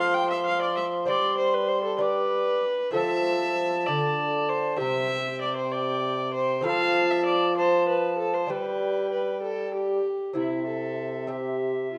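A stately 6/8 lilt at 65 dotted-quarter beats per minute carries this festive, renaissance-style consort dance in C major, a short cut from a longer piece, moving from F through G before arriving on C at 10.4 seconds. A distant alto recorder sings the melody with pure, woody chiff and vibrato, while an up-front viola with gut-string, reedy bowing plays a second line alongside a delicate fingerpicked lute with doubled gut strings. A mellow bassoon anchors the bass with light vibrato, all set in a moderate recital-hall reverb.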